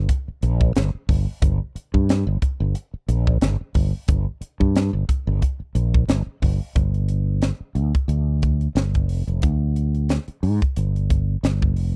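A dry, close studio sound with a 1970s character frames this intense, driving electric jazz fusion passage, cut from a longer piece and built on a lightly swung sixteenth-note feel in 4/4. Up front, a fretless electric bass with a warm, direct tone works in the low register, while a crisp acoustic fusion drum kit (airy and polished, with a high-tuned snare, punchy kick and hi-hat) drives alongside it. The bass opens the passage with the drums joining a tenth of a second later, and the pair move into a new section at 6.8 seconds.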